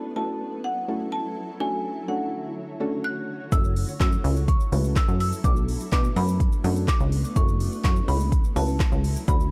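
A hard-mallet marimba carries the melody from the start over a shimmering, ethereal pad and a soft, round pluck, both pumping with sidechain, before a punchy, funky analog bass and an up-front deep house kit with a deep kick and woody snare enter at 3.5 seconds, driving this energetic, confident dance-pop cut at 125 BPM in F# minor through F#m7, Dmaj7 and Bm7 chords.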